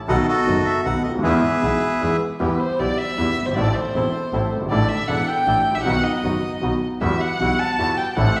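A dark, nasal violin takes over as soloist at 2.4 s, singing with expressive vibrato and portamento after a bright, reedy bandoneon melody opens this brief, rubato tango in E minor at 156 BPM in 3/4, cut from a longer piece. Underneath, a clear, woody upright piano keeps the accompaniment up front, a biting bowed double bass with light vibrato holds the low end, and a smooth second bandoneon adds stabs in the background, the harmony moving from B7 through Em and Am to a closing Emadd9. The mood is playful and passionate, set in the lingering reverb of a recital hall.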